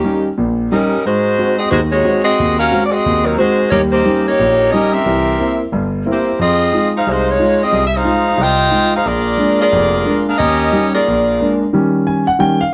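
Light reverb and close, detailed microphones give this short cut from a longer jazz piece an up-front sound. A saxophone section carries the melody in a jazz style, its blend smooth on top with a light vibrato, moving over a swung 4/4 at a brisk 180 BPM in Eb mixolydian. A concert grand piano accompanies with deep bass, its action noise audible and its tone intimate, natural and clear. The harmony shifts through dominant sevenths on Eb, Ab, C and Bb, with a turn to Fm7 before coming home to Eb7. The mood is joyful and energetic, and after the horns stop at 11.6 seconds, the piano takes a brief solo from 11.7 to 12.7 seconds.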